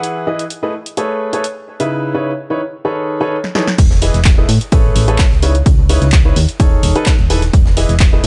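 A clear, woody upright piano sits up front with a sidechain-pumped, tape-echoed riff through Emaj7, Amaj9, C#m9 and B13/D# in this euphoric, feel-good piano house excerpt in E major at 128 BPM, backed by a punchy analog drum machine of crash, handclaps, hi-hat and snare with a short room on the snare, clap and hats. After a drum fill from 3.4 seconds, the drop lands at 3.8 seconds, bringing in a tape-warm electronic kick, a round, mellow FM bass with fast attack and pumping, and a very quiet acoustic rock kit's hi-hat and medium-tuned snare in a bright stone room. The sound sits in small room ambience with a soft top end.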